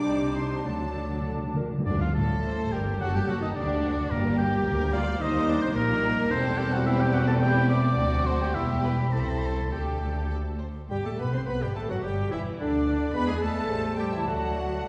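Heard from further back in a reverberant scoring stage, this stormy, dramatic orchestral passage from a quick classical-period movement in 2/4 moves with a pliant rubato and brightens from minor into major partway through. A clear chamber violin section carries the melody over a rich studio violin section and a close-miked oboe. Viola and cello sections, mellow French horns sustaining chords, and an up-front, dark double bass section fill out the lower parts. A hollow flute group, a very quiet clarinet and a bassoon sound briefly at the start and return at 10.9 s, while calf-headed timpani play a fill from 0.6 s.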